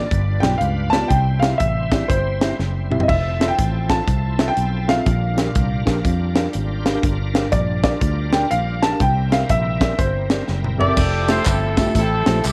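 Uptempo gospel at 122 BPM in F major with a swung 4/4 feel, jubilant and uplifting, led by an intimate concert grand piano melody with audible action noise over a mellow tine electric piano in the background, a shouting, lightly overdriven tonewheel organ through a slow rotary speaker with chorus vibrato that takes a fill at 6.0 s, a round, foam-muted fingered electric bass and a tight funk drum kit with a high-tuned snare and drum fills, before a clear, roomy jazz horn section enters at 10.8 s and tambourine with group handclaps joins at 11.0 s as the harmony lands on Fmaj9, set in light reverb and studio ambience.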